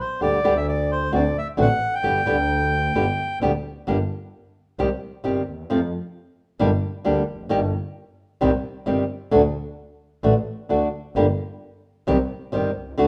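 Nostalgic and elegant, this tango fragment moves with a loose, rubato feel in four. A reedy, airy bandoneon carries the melody up front, playing only from the start until 3.4 seconds. A warm, fingerpicked flamenco guitar supplies the accompaniment, and a single bowed double bass with light vibrato gives an earthy foundation. Both run from 0.2 seconds to the end at 13.1 seconds. After the bandoneon falls away, a second section begins at 3.9 seconds and the guitar and bass carry on as a duo. A moderate reverb from a large studio surrounds the ensemble with a spacious sheen.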